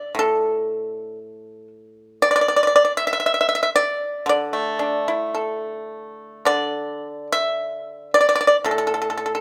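The recording sounds close and detailed, with only a light touch of reverb around a single instrument. It is a short excerpt of Chinese traditional music for solo plucked strings, flowing and pastoral in mood, in 2/4 at a slow, rubato pace of roughly 53 to 59 BPM. A pipa carries everything alone from 0.0 to 9.4 seconds, sitting up front in the mix. Its tone is acoustic and dry, with a percussive bite from the fingerpicks. It ranges from A2 up to E5, and the brief passage is cut from a longer piece.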